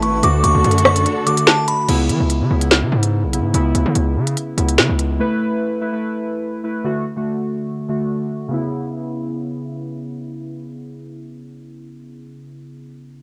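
A half-time drill beat at 145 BPM sets a cold, tense mood in C# phrygian: a crisp, up-front electronic kit of woody snare, hi-hat, rim clicks, finger snaps and crash drives the groove beside a heavy, saturated 808-style bass with a noise layer, both dropping away by about 5.2 seconds. Over the opening, a crystalline FM bell carries the melody while a lush, bowed string ensemble with expressive vibrato holds dark sustained chords, then both fall out at 1.9 seconds after a short break. Warbling, nostalgic lo-fi synth keys in square and sawtooth tones carry the harmony through to 13.2 seconds, moving through a long filter sweep over chords such as C#m7, Asus2 and D, all with the character of a home cassette recording.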